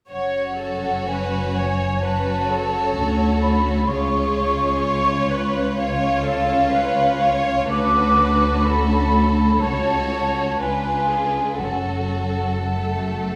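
Classical slow romantic orchestral movement in F# minor at 63 BPM, solemn and yearning with rubato, where a mellow, pure flute ensemble carries a prominent second line above a rich, vibrato-laden violin melody set in the background, a focused lower violin line, lush, smooth violas, and cello and double bass sections sharing the bass with soft attacks and cello portamento, all in a wet recital-hall reverb as the harmony moves from F#m through C#, Dmaj7 and C#7b9 back to F#m at 11.6 s in this section cut from a longer piece.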